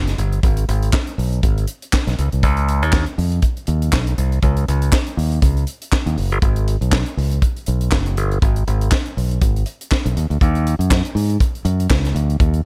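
A dry, close, up-front sound frames this short disco excerpt with a glamorous, danceable mood and a lightly swung sixteenth-note feel. A modern, bright fingered electric bass carries the low end from the very start, its direct tone sitting in the lower register. Just after, at 0.1 seconds, a tight funk drum kit joins with handclaps, hi-hat, a tight kick and a high-tuned snare, all with a natural small-room character.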